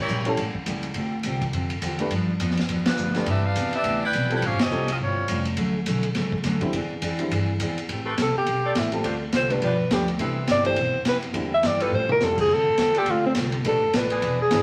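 Big-band swing in A minor at a brisk 208 BPM, this dramatic, brassy excerpt opens with a bright, up-front saxophone section stating the melody over woody pizzicato upright bass, a full-bodied picked steel-string acoustic guitar with audible finger squeak, a slightly detuned upright piano with audible action noise, and an airy, polished drum kit with a punchy kick, then at 8.2 seconds a close-miked alto saxophone takes a vibrato-rich solo above distant, tight sustained chords from a second saxophone section, with a drum fill at 11.9 seconds, all set in a wet club reverb with vinyl crackle.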